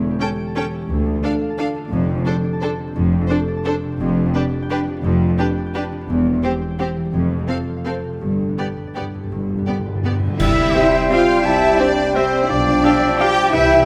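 Classical orchestral ballroom waltz in C major, elegant and festive at a rubato 156-186 BPM in 3/4, where harp arpeggios ring over dark, woody cellos and a distant double bass section while a rich violin section carries the melody with a portamento second violin line and viola accompaniment, until a timpani fill with a cymbal swell, clash cymbals and bass drum at 8.2 seconds leads to a band accent at 10.4 seconds, where airy flutes, oboe, clarinet, mellow bassoon and very quiet horn and trombone sections join, all in a moderate scoring stage reverb.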